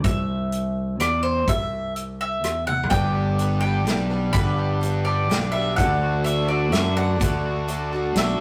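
A picked bowl-back mandolin carries the melody up front over a growly fingered electric bass and a punchy country drum kit in a small room, opening this hopeful folk rock and heartland rock excerpt in 3/4 at 126 BPM in G major; after a drum fill at 2.7 seconds, a shimmering, octave-doubled twelve-string acoustic guitar, a crunchy double-tracked overdriven guitar riff and a very quiet, flute-like tonewheel organ with chorus vibrato and key click join at 2.9 seconds as the chords move from C to G to D, the mix sitting in light reverb with the tube-saturated roughness of a rehearsal-room recording.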